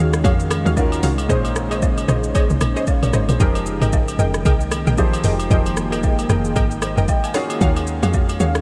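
A soulful, deep amapiano groove opens at once with a short-sustained grand piano, a dark sawtooth pad sitting in the background with chorus and sidechain pumping, mellow detuned chord stabs carried on chorus and analog delay, and a tight, percussive FM log drum bass. At 0.1 s a punchy, layered deep house kit of kick, hi-hat, rim click and shaker joins with a gentle 16th-note swing, and at 0.2 s softer, saturated acoustic agogo bells and woodblock enter with maracas and group handclaps. Minor eleventh chords move from Ebm11 through Bbm11 to Fm11 and back, the whole dreamy mix soaked in a huge ambient reverb.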